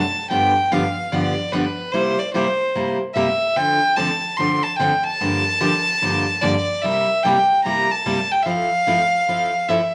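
This country excerpt moves at a brisk 147 BPM in 4/4, with a swung eighth-note feel that gives it a playful, down-home mood. A single bowed fiddle carries the melody from the very start, close and up front, its clear, earthy tone touched with a light vibrato as it sits high in its register. At 0.3 seconds a picked steel-string acoustic guitar joins in accompaniment, a bright, full-bodied dreadnought sound with fresh strings, also placed up front beneath the fiddle. The harmony travels through G7, C7, Dm7, Gm7 and C7 before settling on Fmaj7. A wet, large studio reverb surrounds the pair, and a layer of vinyl crackle lends the recording an aged, homespun character.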